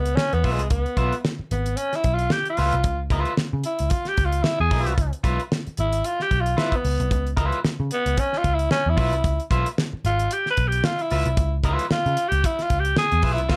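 A swung sixteenth-note funk groove at 113 BPM struts playfully over a single Db7#9 chord, as a raspy, gritty tenor saxophone solos up front through the whole 13.6-second excerpt, backed by a round, foam-muted vintage picked bass, a damped 70s drum kit with a fat snare and tight kick, and a twangy, slightly broken-up electric guitar entering at 0.4 seconds, all in light reverb.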